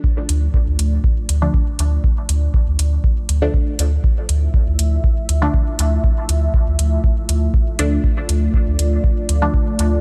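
A dark analog pad of detuned sawtooth tones sustains a D minor chord over a deep, up-front electronic kick from the opening of this nocturnal, meditative dub techno passage at 120 BPM. A round, soft sub bass holds D2 with tube saturation and sidechain pumping, while metallic, tape-warm hi-hats sit in studio reverb. From 1.4 s a muted, filtered chord stab enters with chorus and phaser, trailing dub echo into the digital ambience.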